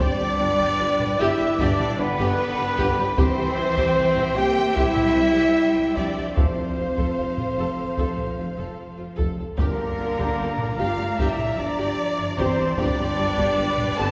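Close, dry taiko struck with hard sticks drives a straight 4/4 pulse through this dark, heroic cinematic excerpt, while mellow French horns hold sustained chords and dark, distant trumpets add stabs. Lush bowed violins with expressive vibrato carry the melody, a pure, very quiet flute and a second violin line add supporting lines, and violas, cellos, rich double basses and a mellow tuba fill the accompaniment and bass. Very quiet timpani join at 9.6 s as the harmony turns to G minor, all within a wet concert hall reverb.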